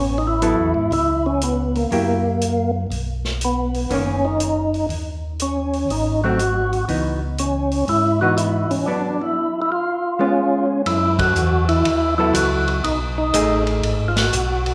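A swung 121 BPM groove in 4/4 drives this smoky, bluesy soul jazz organ trio excerpt, where a fat, percussive tonewheel organ with key click, light overdrive, chorus vibrato and a slow rotary speaker carries the melody over a round, mellow organ bass line, a dark, clean hollow-body guitar and a punchy vintage drum kit with dark cymbals, all bathed in a recital hall's reverb as the key moves from C# dorian to F# dorian at 10.9 s, with band accents at 11.1 and 14.1 s.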